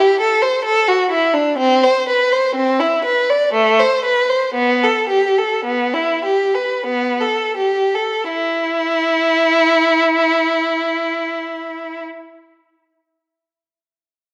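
A rich, focused solo violin, bowed by one player and sitting up front, carries this introspective, solemn fragment of a baroque-style suite movement for unaccompanied violin. Its vibrato colors each phrase as it moves through a range from A3 to D5 in a flexible, rubato triple metre. The playing gradually slows from 0.2 seconds until about 8.3 seconds, where the opening section gives way to a second, briefer passage that runs to the end. A moderate recital-hall reverb surrounds the instrument, while the sound carries the worn, warbling character of old cassette tape, with its pitch drifting unsteadily. Cut from a longer piece, it lasts about 12 seconds.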